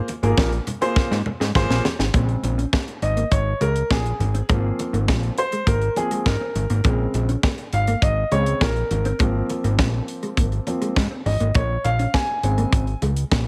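A deep-bassed concert grand piano takes a solo from 2.1 s over a slick, late-night early-eighties boogie funk groove at 102 BPM in Bb minor, driven by a fat, saturated detuned analog bass with a plucky filter, a tight, up-front funk kit with a high-tuned snare and gated reverb that plays a fill from 1.0 s, a dark, clean chorused electric guitar riff in the background, and very quiet bright congas, all in a small room as the chords alternate between Ab69 and Bbm9 in this excerpt from a longer piece.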